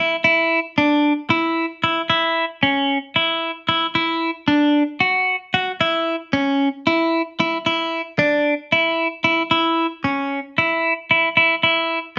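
A clean electric guitar opens this short fragment of a progressive instrumental and carries it alone from 0.0 to 12.0 seconds. The mood is driving and bright, set in an odd 7/8 metre with a straight feel. The picked tone is twangy and compressed, colored by a phaser, and sits up front in the mix within a narrow middle register. A wet studio reverb with a short decay gives the guitar a sense of room. The passage reads as a single section lifted from a longer piece.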